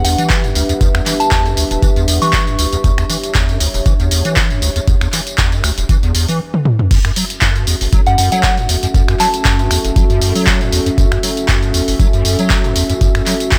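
A squelchy, resonant acid bass riff drives this gritty acid house clip. Its bright square-wave tone is pushed through overdrive and ensemble chorus, with a filter sweep and sidechain pumping running through it. Beneath it, an overdriven electronic kick with a deep, small-room character enters at 0.3 seconds, and an up-front analog drum machine supplies hi-hat, handclaps, finger snaps, tambourine, toms and crash cymbal with a gentle swing. A moody, detuned analog pad holds sustained Em7 and F#m7 chords with a slow attack, a sub octave and a wave-folded edge, chorused and pumping along with the bass. A soft, pure FM bell plays brief melodic phrases at the start and again from 8.1 seconds, its mellow tone trailed by tape echo. A short drum fill leads into the drop at 6.9 seconds, and the whole clip sits in a digital ambience.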